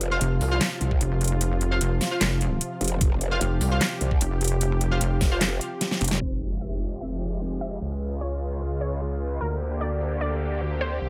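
This excerpt from a heavy wobble dubstep track moves at 150 BPM in 4/4 with a half-time feel, its dubstep drum kit driving the opening with a huge snare, handclaps and metallic hi-hats, with both hats and snare run through a low-pass filter, while a knocking, tape-warm electronic kick joins from 0.9 to 5.3 seconds. The mood is aggressive and menacing in F harmonic minor, with a growling, saturated growl bass wobbling through a formant filter, chorus and overdrive, stacked against a pulsing, heavy pluck wobble bass that also carries chorus and overdrive until 6.2 seconds. Above them, a lush, airy supersaw pad holds sustained chords with sidechain pumping and a low-pass filter, and a bold, orchestra-hit-like synth stab punches out bright, ring-modulated hits with reverb and delay through the first half. A drum fill leads into a new section at 6.2 seconds, where an electronic impact lands, a filter sweep runs over the drums and the mix, and a detuned unison pluck with a sub octave and delay takes the melody. 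The harmony moves from F5 through Fmadd9 and Db to Bb6/D, in a dry, low-pass-filtered production.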